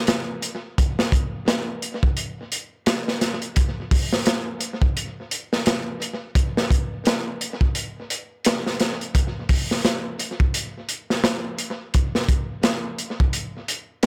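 Brooding and smoky, this trip hop excerpt moves at 86 BPM in 4/4 with a swung sixteenth-note feel. A crunchy acoustic breakbeat kit of kick, snare and hi-hat plays from 0.1 to 14.1 seconds, sitting up front with a tight kick, a medium-tuned snare and a gritty, saturated tone whose rolled-off top keeps it mid-forward. Tape echo trails the drums, and the echo-heavy mix sits in light reverb.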